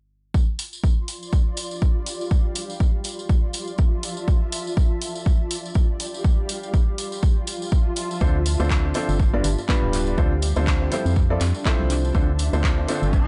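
An echo-heavy digital ambience with a faint mains hum and a top end that stops at 10.8 kHz frames this energetic, soulful piano house excerpt, cut from a longer piece and riding a swung sixteenth-note feel. From the opening, an up-front, punchy electronic kick re-recorded in a small room drives the groove, joined by a compressed, saturated tambourine blended with maracas and group handclap, and an analog drum machine supplying handclaps and hi-hat through analog delay. A granular cloud pad drifts in soon after, blurred, detuned and evolving, its mellow body pumping against the sidechain inside its own reverb. At 8.2 seconds a clear, woody upright piano riff arrives with analog delay and sidechain pumping, alongside a hollow, organ-like FM bass that sits dark and percussive at the front of the mix. The harmony circles between Dm7, G7 and Fmaj7, and a background riser enters at 12.5 seconds.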